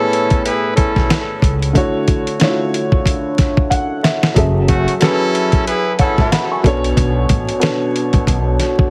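A dark, slightly detuned upright piano with audible action noise and long sustain provides the accompaniment in this reflective, gritty boom-bap hip-hop excerpt, joined by tight jazz-style trumpet section stabs with light vibrato and delay until 6.5 s, a dusty sampler-style drum kit with a thumpy kick and fat snare that plays a fill at 3.7 s, and a woody pizzicato upright bass from 1.0 s, set in a heavily compressed radio-like ambience with vinyl crackle.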